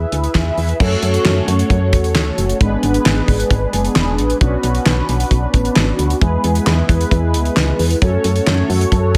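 Nocturnal and cool, this synth-pop excerpt moves at 133 BPM in F# minor, with mellow, brassy synth brass carrying the chords through E, F#m, G#dim and Bmadd9, its detuned sawtooth tone thickened by chorus and phaser and given vibrato and a filter sweep. Beneath it, a solid FM bass sounds punchy, round and dark with a fast, decaying attack, while a damped 70s drum kit enters at 0.1 seconds, dry and up front, with a fat snare, tight kick, hi-hat, handclaps and crash cymbal set in gated reverb. Light studio ambience frames the mix.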